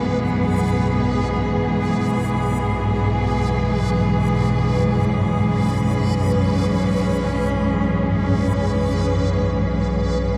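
Drenched in a dark cathedral reverb, this ominous dark ambient drone, cut from a longer piece, sets a lush, bowed cello section with vibrato up front over a calm, chorused organ-like drone low in the register, while a quieter reversed, granular texture swells high above with a bright, detuned shimmer throughout its 10.4 seconds.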